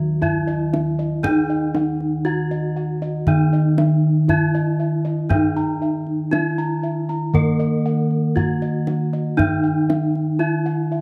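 Shimmering and hypnotic, this slow Javanese gamelan excerpt at 59 BPM sets a bright, up-front bronze metallophone melody with paired-tuning beats over an airy, wooden-mallet metallophone accompaniment, round bossed gongs with a vintage, band-limited tone carrying the bass, a mellow, padded set of bossed gongs spinning soft arpeggios from 0.2 seconds, and a deep kendang played with soft hands, all heard through close, detailed microphones in a moderate recital-hall reverb.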